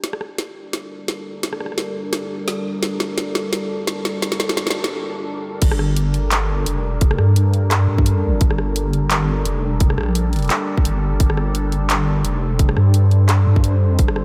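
Half-time drum and bass in G minor at 172 BPM with a light swing, this cinematic, dark excerpt opens with a deep, moody ambient pad holding sustained chords, its detuned sawtooth layers pumping under sidechain and blurred by chorus, while the drum kit plays a fill of woody snare, bright hats, rim clicks, handclaps and crash cymbal before a brief break at 4.9 seconds. At the drop at 5.6 seconds, a tight electronic kick and a deep, warm wobble bass built from triangle and sine tones arrive up front, the bass compressed and chorused. A moderate cathedral reverb soaks the whole mix in a dreamy haze.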